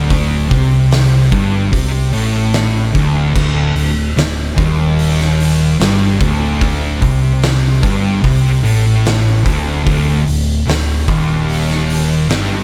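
A slow, straight 4/4 at 74 BPM drives this hypnotic, ominous stoner and doom metal passage, cut from a longer piece and resting on a D5 chord. Two thick fuzz guitars play the riff from the start, one up front and one sitting in the background, over an overdriven fingered electric bass with a round, amped tone. An oversized low-tuned acoustic kit enters at 0.1 seconds, its punchy kick, fat snare, hi-hat and dark crash gritty and saturated in a bright, pumping stone room.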